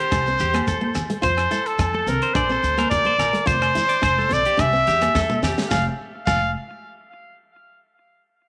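Sunny and danceable, this short cut from a longer highlife guitar band piece moves at a straight 107 BPM in 4/4, in F major and tuned slightly low to A4 = 439 Hz. Up front, a clear pop-style trumpet carries the solo melody with vibrato and a smooth top, touched by tape echo. Beneath it, a bright, twangy clean electric guitar picks compressed arpeggios through its own tape echo, while a picked steel-string acoustic guitar adds warm accompaniment with audible finger squeak. A woody, thumpy pizzicato upright bass sits dark and low, and a tight funk drum kit with a high-tuned snare and punchy kick plays from a small room, with a fill between 5.2 and 5.7 s. Ringing agogo bells, grainy shekere and thin-skinned congas sit in the background, the whole mix bathed in a moderate plate reverb as the chords move through C, F, Bb, F and back to C before dropping away at 5.7 s.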